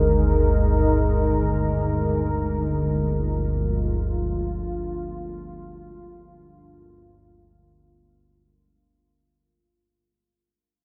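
An up-front analog drone sits low in the register, its detuned sawtooth and pulse-wave tones shifting through pulse-width modulation, chorus and phaser while a filter sweep works on it across the excerpt. This dark ambient piece moves in free time, and its mood is unsettling and ominous. Above the drone, a deep, moody pad holds sustained chords built around an Ab5/G sonority, blending detuned unison sawtooth with a sine sub octave and mellowed by chorus and its own reverb. Its slow attacks and long releases give the sound an evolving, ever-shifting quality. Barely audible beneath them, a bronze singing bowl struck with a suede striker adds a ringing, metallic shimmer with slow beating and a boxy small-room character. The whole excerpt, cut from a longer piece, fades out from the start inside a huge, dark reverb, and the production stays warm, with its top end rolled off above 10.9 kHz.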